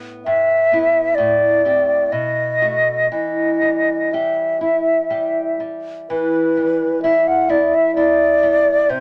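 A dark, small-sounding fingerpicked nylon-string guitar opens this melancholic, yearning romantic duo in a slow, rubato 3/4, and at 0.3 seconds a mellow, hollow silver concert flute enters up front with a pure, close-miked tone, tongued notes and vibrato, singing its melody over the guitar's accompaniment in a moderate studio reverb until the cut ends at 9.0 seconds.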